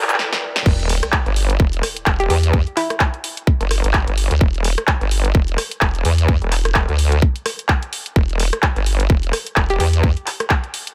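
A drum fill and a background riser open this swaggering, aggressive bass house cut in E minor at 128 BPM with a swung 16th feel, falling into a brief break before the drop lands at 0.7 seconds with a sub-drop impact. From there a tight, up-front kick and a layered house kit with punchy snare, bright hats, handclaps, rim clicks and crash drive the groove, while a nasal, resonant vowel-sweep wobble bass, saturated with overdrive, chorus and sidechain pumping, dominates the low end. A hollow, bouncy square-wave pluck with chorus and tape echo flickers in briefly around 2.2 seconds and again near the close, all in a dry, tightly produced mix.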